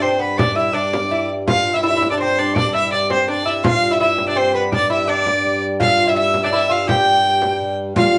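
A rustic, ancient-sounding medieval dance in G mixolydian, moving at 166 BPM in a straight 3/4, heard as a short excerpt from a longer piece. A rich, earthy, boxy bowed fiddle carries the melody up front, while an edgy folk-style shawm with vibrato and scooped notes plays a high second line, a delicate fingerpicked lute on double gut strings adds another, and a reedy, breathing pedal harmonium holds a low G drone. A small, bright frame drum played close with soft hands keeps time throughout, a distant riq with bright jingles sounds only at 8.0 seconds, and the band plays live in one room under a wet studio reverb, with a dark top end.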